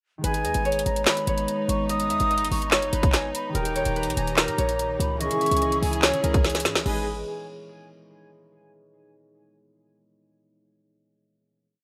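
Hip hop trap piece, hard-hitting and eerie in a half-time feel, where a bright, fingerpicked Celtic harp loop carries the melody over thumb-plucked concert harp chords, an airy flute counter-melody and a sul tasto chamber string pad, underpinned by a punchy 808 bass with pitch slides and an up-front trap kit of hard-clipped kick, woody snare layered with clap and metallic sixteenth-note hats with fast rolls, before a drum fill at 6.4 seconds leads into a final chord in a rough home-demo mix with studio reverb.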